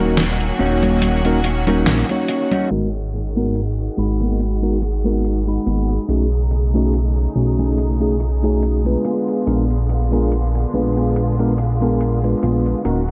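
A slow 4/4 groove with a light sixteenth-note swing carries this woozy, hazy vaporwave excerpt: a glossy, up-front chorused synth bass and a mellow tine electric piano drenched in lush chorus and tape echo set the mood from the start, joined at 0.2 seconds by a gated 80s digital drum machine whose congas, hi-hat, crash and gated-reverb snare feel tape-softened and roomy. Clear, bowed symphonic strings hold sustained chords beneath, while from 0.6 seconds a dark, fingered electric guitar riff sits in the background, chorused, echoed and filtered. The harmony moves from D#m7 through G#m9, B13 and A#7b9, and a filter sweep begins at 2.7 seconds, all under a light reverb and a muffling low-pass filter.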